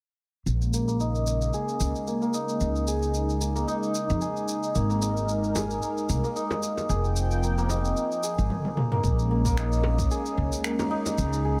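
Organic downtempo with an earthy feel, cut from a longer piece, where a woody, growly pizzicato upright bass and a shimmering, hammered santur playing arpeggios sit up front, the santur carrying delay and a low-pass filter sweep until 9.0 seconds, over a smooth, detuned sawtooth pad with chorus and sidechain pumping, a layered deep house kit of finger snaps, shaker and toms, a deep, dry frame drum arriving at 5.6 seconds, and a background electronic kick drum that joins at 9.0 seconds after a drum fill, set within light digital reverb.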